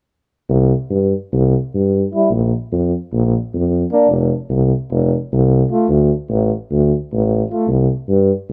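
A mellow tuba with light vibrato anchors this exuberant, festive Balkan brass band piece from 0.5 seconds, driving a straight 9/8 at 301 BPM in C mixolydian, while a clear, roomy euphonium and a warm trombone with vibrato join in classical-style accompaniment from 2.1 to 7.7 seconds over chords moving through C5, Bb5, F5 and D5 in a live, lightly reverberant room, all in a short cut from a longer piece.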